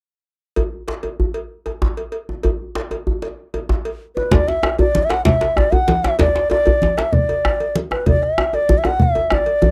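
A cowbell and a djembe open this dry, close, 1970s-style fragment of powerful, earthy West African drumming in 12/8 at 128 BPM, and at 4.2 seconds an airy, bamboo-toned bass bansuri enters up front with vibrato and a crisp attack, singing in D major pentatonic over a fuller ensemble of round, vintage bombo, bright thin-skinned congas and a second djembe.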